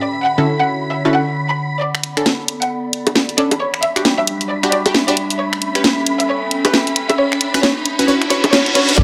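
A rich, vibrato-laden violin section carries the melody over a silky string machine and a warbling, lo-fi pad at the start of this skippy, late-night two-step garage excerpt at 134 BPM, with punchy, wave-folded chord stabs joining at 0.4 seconds as the harmony moves through Dmaj9, Em9 and A7. From 1.9 seconds a layered garage kit with a cracking snare, bongos, finger snaps, hi-hat and shaker drives a swung build-up, while a filter sweep works on the string machine and a background riser and reverse cymbal gather under a moderate plate reverb. A thick, saturated sub bass and a tight electronic kick arrive only at 9.0 seconds, landing as the build-up ends.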